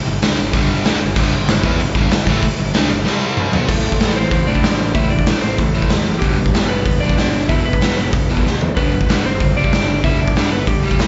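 Heard through a club PA with roomy reverb and a capped top end, this rowdy, upbeat punk rock excerpt at 189 BPM in G major sets a gritty, punchy, up-front garage drum kit, with fills at 3.1 s and 8.4 s, against background layers of overdriven garage guitar with slapback echo, growly fuzz-toned picked bass, and a sludgy distorted guitar that stops at 3.7 s, when a compressed, slightly broken-up lead guitar with digital delay takes the melody.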